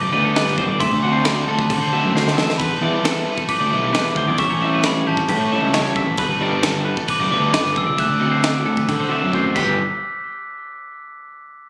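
This math rock and midwest emo piece, cut from a longer work, moves at 134 BPM in a straight 4/4 in G major, with a bright, wistful mood. A glockenspiel struck with soft plastic mallets carries the melody in a high, bell-like ring with a boxy small-room character, while a clean, twangy twelve-string electric guitar picks compressed arpeggios through digital delay. Beneath them, a raw, double-tracked garage guitar plays an overdriven riff, and an up-front fuzz bass adds a gritty, picked low end. A crisp fusion drum kit enters at 0.4 seconds, with a high-tuned snare, punchy kick, crash cymbal and a pumping small-room sound, and it plays fills at 2.1 and 9.3 seconds. The harmony cycles through Gmaj7, D7, Em7 and A9 before settling on G, and the whole take has a close, compressed sound with little reverb and the immediacy of a phone recording made in the room.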